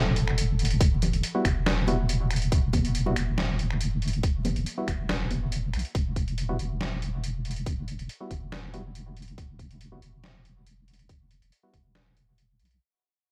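A deep, wobbling bass in E minor opens this cavernous, brooding deep dubstep excerpt at 140 BPM with a half-time feel, its dark, chorus-thickened tone sitting up front over an Emadd9 chord as the clip fades out. A barely audible electronic impact lands at 0.2 seconds alongside a gritty, pitched-down trip hop sampler-style kit of finger snaps, hi-hat and snare. A tight, layered electronic kick follows at 0.8 seconds, with background congas playing until 5.4 seconds. A hollow, decaying organ stab with chorus and dub echo punctuates the groove, all set in light reverb and digital ambience with vinyl crackle.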